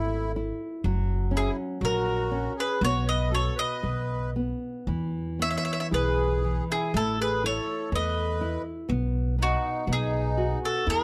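Close, detailed microphones with light reverb and lossy compression artefacts frame this 11-second fragment of a longing, passionate fado-style ballad at 60 BPM in a rubato 2/4, where an up-front bowl-back mandolin with picked double strings carries the melody over a reedy, sweet accordion second line with light tremolo tuning, a full-bodied fingerpicked nylon-string guitar and a woody, thumpy pizzicato upright bass, all moving through chords built on A, F#, B and E.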